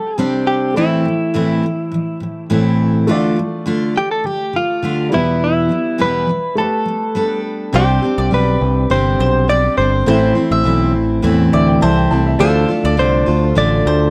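An easy-going, sunny acoustic pop excerpt in which a clean, scooped electric guitar with tape echo carries the melody over full-bodied picked acoustic guitar and a woody upright piano in the background, with woody double-string mandolin arpeggios and up-front picked electric bass entering at 7.7 seconds, a piano fill at 11.2 seconds, and a very quiet, lightly overdriven tonewheel organ with slow rotary speaker adding sustained chords from 12.4 seconds, all captured in a dry, close 1970s-style studio sound.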